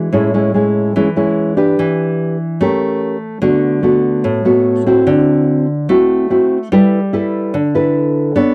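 Bossa nova in A major at 146 BPM, this brief cut from a longer piece has a romantic, breezy mood and a straight 4/4 feel. A single nylon-string guitar carries it alone from start to finish at 8.5 seconds, thumb-plucked with a classical touch and ranging from A2 to C#5. Its tone is warm and acoustic, sitting up front with audible finger squeak that adds intimacy. The harmony moves through lush chords, opening on Amaj7 and passing through Em7, A7b9, D6 and D9 before arriving on G69 at 6.7 seconds. Light reverb lends a touch of air to the dry, close sound of a 1970s-style studio recording.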